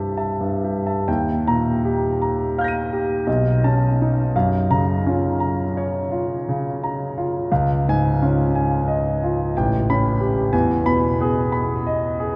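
Dreamy and hazy, this impressionist classical solo piano piece drifts in a rubato 9/8 at roughly 42-61 BPM, tuned to A4 = 443 Hz and cut from a longer work. A clear concert grand sits up front across the full 12.4 seconds, spanning A1 to Eb7 with a deep bass and long, natural sustain. Its colorful chords move from C6 through Ebadd9 at 1.1 seconds and Gbmaj7 to a closing Emaj7, all bathed in a cathedral reverb that places it in a vast, echoing space.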